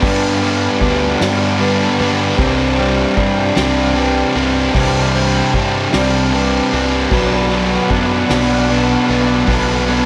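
Moving at a slow 51 beats per minute in a straight 6/8, this post-rock excerpt feels soaring and hopeful, its chords shifting from G to Csus2 at 2.4 seconds and to B minor at 7.1 seconds. A bright, compressed fuzz guitar sits up front playing a riff, a sludgy overdriven guitar plays a riff in the background, and a very quiet, twangy clean electric guitar picks arpeggios. A mellow vibraphone struck with soft mallets, motor off, rings out metallic arpeggios in the background, its sound touched by analog delay and slapback echo, and the fuzz guitar carries a slapback echo of its own. Underneath, a round, dark picked electric bass anchors the low end, and a distant, roomy drum kit played with soft mallets gives a fat snare, a punchy kick and dark crash and ride cymbals with a rolled-off top. At 7.1 seconds a reedy, breathing pedal harmonium enters very quietly with sustained chords, and a lush hall reverb lends the whole mix a big arena sound.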